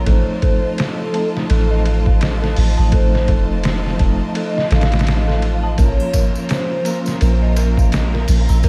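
A soft, round 808-style bass sits up front in this smoky, melancholic trip hop excerpt at 84 BPM, joined by a muffled, pitched-down sampler-style drum kit with a thumpy kick and swung sixteenths. A tine electric piano with tremolo and tape echo plays accompaniment over F7/A, while a clear chamber violin section holds vibrato-laden chords, an eerie, inharmonic synth bell with 12-bit sampler grit spins arpeggios in the background, and a pure, breathy sine lead carries the melody through analog chorus. At 5.8 seconds the harmony moves to Bbm and a faint tambourine and triangle enter, all under a light reverb.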